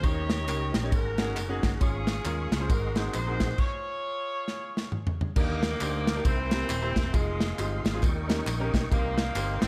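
Reverent yet jubilant, this swinging uptempo gospel fragment sets a tight, distant saxophone section with tape echo and light vibrato on the melody over a clear, worn grand piano, a lightly overdriven tonewheel organ murmuring sustained chords through slow rotary speaker and chorus vibrato in the background, a round fingered electric bass, a punchy, up-front drum kit with bright cymbals, and a soft bed of tambourine, tube shaker and group handclaps, all in a large studio reverb, with a stop at 3.6 s and a drum fill from 4.5 s leading into a lift to a new key at 5.4 s.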